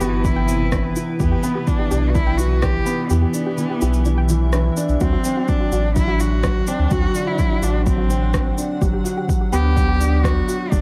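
Piano and strings electronica at 126 BPM in 4/4, luminous and tender, where a felt-muted upright piano with audible action noise carries a mellow riff through tape echo beside an expressive bowed cello melody with vibrato and portamento, over a granular cloud pad, a soft round pluck arpeggio with chorus, a deep sine sub bass pumping to the sidechain, electronic shaker and rim click, and an overdriven electronic kick that enters at 0.2 s and drops out from 3.1 to 5.0 s, all moving through Cmaj7, Em7, D7 and Gmaj7 in a dark, lightly reverberant production.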